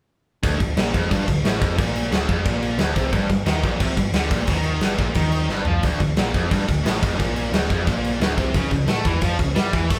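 Heavy metal at 177 BPM in D harmonic minor, this short excerpt drives with an aggressive, relentless feel as two tight, bright distorted guitars play a picked riff, one sitting in the background, over a dark, round hollow-body bass from 0.4 to 10.0 seconds. An up-front acoustic drum kit with a punchy kick, fat snare, toms and crash cymbal rings in a stone-room ambience and lands a fill at 5.5 seconds. The chords move from Dm to G5, back to Dm and onto A7b13/C#, captured as a band playing live in one room with light reverb.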